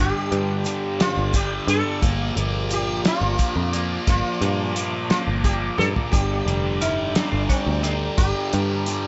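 A buzzing, shimmering sitar melody with analog delay opens this dark, trippy psychedelic rock fragment in a straight 6/8, over a bright, double-tracked fuzz guitar riff with distortion and phaser, a round, foam-muted picked electric bass up front, and veiled, con sordino strings holding distant sustained chords in the background. A cloth-damped, thuddy drum kit with a fat snare and tight kick enters at 0.3 seconds, joined by a grainy egg shaker far back at 0.6 seconds, and the drums play a short fill at 5.8 seconds. The dry, dusky sound stays close and intimate throughout.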